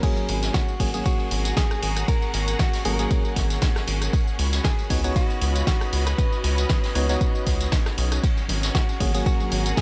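A swung groove drives this hypnotic, smooth deep house cut, with an up-front, tape-warm electronic kick and a layered house kit of fat snare, hi-hat, rim click, tambourine and crash, while a background brush kit adds dark cymbals and a rolled-off top. A rubbery, hollow square bass enters at 0.3 seconds beside dark, percussive organ stabs touched with chorus and analog delay, all over a moody detuned pad, lush distant strings and pumping sustained chords that move between G#9sus4 and C#9sus4. From 0.5 seconds a bright, clean, direct-recorded electric guitar carries the melody through analog delay, and very quiet ringing congas slip in at 8.4 seconds before this fragment of a longer track ends.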